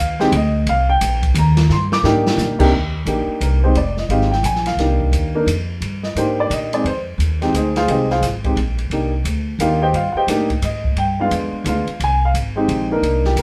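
A dark, mellow baby grand piano carries the melody up front in this smoky, moody jazz trio cut in C minor, swinging at 175 BPM in 3/4 and taking a solo across the first 2.7 seconds. The woody pizzicato upright bass sits close alongside it. An airy, polished drum kit enters at 0.2 seconds with dark cymbals, a medium-tuned snare and a boomy kick, playing a fill from 1.7 to 2.4 seconds, as the harmony moves between Cm7 and Fm7 before reaching G7b9 and Abmaj9, all captured live in one room with moderate reverb.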